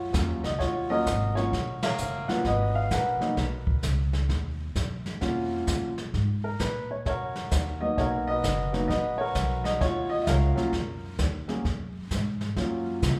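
An up-front, open-sounding concert grand with long sustain carries the melody over Ebm9 and Abm9 chords in this late-night, swinging jazz piano trio passage at 130 BPM in Eb minor, cut from a longer piece, with a woody pizzicato upright bass underneath and a brushed drum kit with dark cymbals and a punchy kick entering at 0.1 s, the band hitting a shared accent at 1.8 s inside a moderate large-studio reverb that captures the trio playing live in one room.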